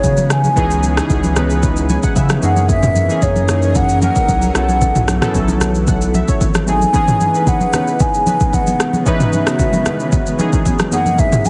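Soulful and late-night, this amapiano passage moves at 113 BPM in a straight 4/4, set in C# minor and cut from a longer piece. A mellow, hollow concert flute carries the melody with vibrato and a soft attack, touched by digital delay, while round, airy analog keys with a vintage, warbling chorus sit up front, playing chords that move from C#m9 through F#13 and B9sus4 to G#7b9. Beneath them, a very quiet granular pad drifts in at 0.2 seconds, its cloudy, blurred voicings evolving with a slow attack and a long release. The deep house drum kit is layered and produced, with a deep, tape-warm kick, rim click, shaker and toms, joined by very quiet congas with a damped, thick-skinned tone. A thick, saturated sub bass anchors the groove until it stops at 6.8 seconds. Light reverb surrounds a heavily compressed, radio-like sound whose top end is rolled off.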